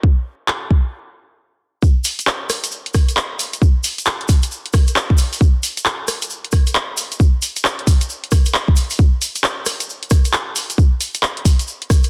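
Soulful and skippy, this excerpt of UK garage moves at 134 BPM in 4/4 with a 63% swing on the sixteenths, built from an up-front, punchy electronic kick and a bright-hatted house kit of handclaps, hi-hat and rim click that enters at 0.5 seconds. After a brief stop from 0.9 seconds, the drop lands at 1.8 seconds, bringing in a grainy, mellow tube shaker with a live-room feel. Light reverb and digital ambience sit around a dense, heavily limited modern master.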